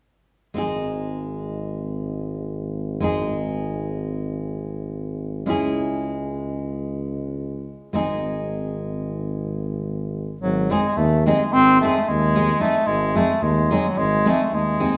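In 9/8 at 220 BPM in eighths, this restless, fiery Balkan wedding-band excerpt in G# major sets a dark, full-bodied fingerpicked nylon-string guitar, with audible finger squeak, over a mellow tuba bass with light vibrato, moving from G# to C#m and back, until a clear, classical-style bass clarinet steps up front with the melody at 10.4 seconds, all bathed in the wet reverb of a large studio room where the band plays live.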